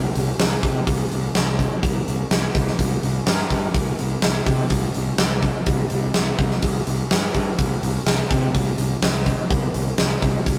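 A straight, driving 4/4 pulse underpins this swaggering, energetic hard rock passage, cut from a longer piece. A fuzz-soaked fingered electric bass opens it at the very start, its overdriven tone bright and growly as it sits between C2 and C3. A huge arena drum kit joins at 0.2 seconds with hi-hat, kick drum and snare, placed up front with a fat snare and a punchy kick that carry an acoustic hall character. Both parts play through to the end at 10.6 seconds in a single continuous section. The whole take has a rough rehearsal-room feel, colored by tube saturation and a moderate stone-room reverb that gives the pair a raw, live edge.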